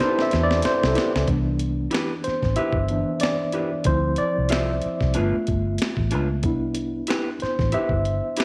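A 93 BPM groove in 4/4 with a light 16th-note swing opens this soulful, warm neo-soul R&B excerpt in C major, its boom bap sampler-style drum kit sitting up front with a thumpy kick, high-tuned snare, hi-hat and finger snaps, all compressed, gritty and tape-warmed after being re-recorded in a large room, with a drum fill across the first 1.3 seconds. A worn, slightly out-of-tune tine electric piano carries a solo through the whole passage, its clean tone heard through built-in speakers and placed up front. From 0.3 seconds a vintage foam-muted fingered electric bass adds a dark, round, punchy low end, while an electric guitar through a small old amp plays a picked second line with a slightly broken-up, lo-fi character. In the opening moments a very quiet, shimmering chorused pulse-width pad holds retro sustained chords with a soft attack, and a mellow horn section with light vibrato lands barely audible stabs before both fall away by 1.3 seconds. 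The harmony moves from Cmaj7 to Dm7 and G7 before returning to Cmaj7, and a moderate echo-chamber reverb gives the recording a roomy glow.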